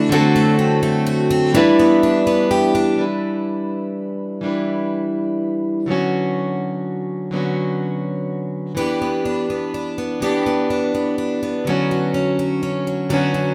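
In a lilting, straight-felt three-beat metre, this wistful, melancholic acoustic folk passage, cut from a longer piece, has the gentle sway of a small band or duo. A picked steel-string acoustic guitar with a parlour-sized body and fresh strings sits up front, carrying the accompaniment throughout. Beside it, a jumbo twelve-string acoustic guitar adds shimmering, octave-doubled arpeggios with a full-bodied, bright ring and an audible finger squeak. It drops out at 3.0 seconds and returns at 8.8 seconds. The harmony moves through D7, Em7 and Bmadd9/D, leaning into a bittersweet, unresolved colour. A moderate small-room reverb gives both guitars a close, intimate setting.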